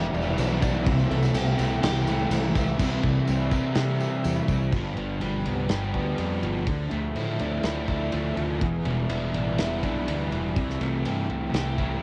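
An overdriven semi-hollow guitar sits up front with a warm, hollow-bodied riff, colored by reverse reverb and the softened grain of cassette tape. Behind it, a thick fuzz guitar also plays a riff in darker, distorted tones thickened by ensemble chorus and the same tape character, while a very quiet, bright clean guitar, recorded direct and compressed, picks arpeggios underneath. A growly fuzz bass with overdrive anchors the low end, and a loose indie drum kit from a small room adds dark cymbals, a medium-tuned snare and a tight kick. A jingly, band-limited tambourine glints in the background before dropping out at 4.6 seconds. This wistful, hazy slice of shoegaze and dream pop moves in a straight 4/4 through Em7 and C6, then G7 and Dmadd9 from 4.7 seconds, before circling back, all captured as a lightly reverberant home recording on cassette.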